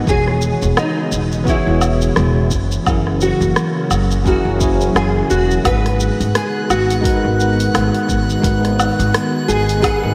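Sunset chillout in G# minor at 86 BPM with a swung sixteenth feel, this wistful excerpt sets a bright, fingerpicked nylon-string guitar melody with ensemble chorus and diffuse delay over bell-like tine electric piano, a mellow ethereal pad in the background, a woody, thumpy pizzicato upright bass up front, and a deep electronic kick with a deep house kit of hi-hat, rim click, shaker and woodblock, while a calm, glassy texture of drifting overtones enters at 6.0 s and chords move from E6 to F#7 to G#m7 in a dreamy mix soaked in lush hall reverb.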